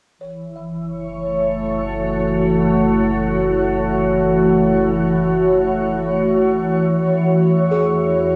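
Reflective and spacious, this free-time ambient piece is cut from a longer work, recorded at home on cassette with a wet, lightly reverberant studio ambience and tuned to A4 = 443 Hz. A glassy, warbling FM pad holds sustained chords up front from 0.4 s, moving from F#m7 to C#m/E at 7.1 s, with ensemble chorus and its own reverb. Beneath it, a woody, buzzing kalimba fades in with soft arpeggios from 0.2 s, while a round, deep analog bass sits low and mellow in the mix.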